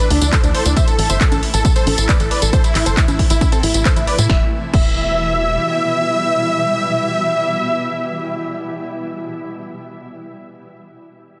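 A huge, detuned supersaw lead with sidechain pumping and dub echo carries the melody up front in this driving, bittersweet uplifting trance drop, cut from a longer piece, over a shimmering, granular ambient pad, a very quiet, lush pluck line, a tight, nasal sequencer bass and a punchy, tape-warm kick with an analog drum machine of snare, handclaps, hi-hat, congas, tambourine and crash, the drums dropping out at 4.9 seconds and the bass at 5.6 seconds as the chords move from Dsus2 and Am to Em under a dense, heavily limited master.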